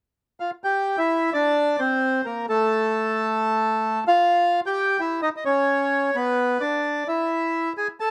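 Tango for solo bandoneon, melancholic and sultry, played rubato around 131 BPM in 4/4 and cut from a longer piece. The reedy, bright, airy bandoneon sits up front across roughly eight seconds, ranging from A3 to A5 through a drifting progression that moves from Dsus24 and Bbadd9 to F/A, Em, C#sus2 and finally E. The open-air recording is dry, with little reverb and nothing of a surrounding room.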